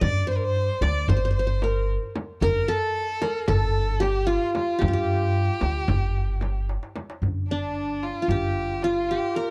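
Turkish makam ensemble fragment in G makam nihavent, hypnotic and melancholic, moving in 9/8 at 225 eighth-note beats per minute. A bright-edged, plectrum-plucked qanun carries the melody up front over a woody, thumpy gut-string upright bass. A single bowed violin adds an expressive second line full of vibrato and portamento, while a crisp, saturated metal-shell darbuka and a deep, soft-handed frame drum sit in the background. A drum fill at 6.7 seconds leads into a new section at 7.2 seconds, just after the frame drum drops out, all captured in a dry, close 1970s-style small-room sound.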